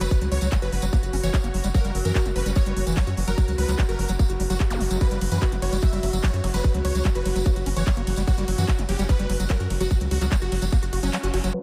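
Hypnotic and alien, this psychedelic trance excerpt runs at 147 BPM in 4/4 with a straight feel in F# major, caught in the middle of a drop. A tight, up-front electronic kick drives it alongside a deep, round analog bass built from sawtooth and sine, while a gritty, squelchy acid bass in square wave snakes through a resonant, filter-swept riff, saturated and pumping with tape echo. Above, a punchy detuned supersaw stab carries the melody with a filter pluck, colored by phaser, cassette tape grit, sidechain pumping and tape echo, and an evolving wavetable pad holds a morphing, warbling vintage chord with chorus, reverb and a slow attack. A very quiet, metallic FM wobble bass surfaces aggressively in two spans, from 0.0 to 2.5 seconds and again from 5.0 to 9.1 seconds, while a techno kit of smooth hats, ride cymbal and handclaps, re-recorded in a small room, sits with a jingly acoustic tambourine. 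Faint zaps and a downlifter flicker at 4.7 seconds and at the close, and the kick drops out at 11.1 seconds on a band accent, all under light reverb and a low-pass filter.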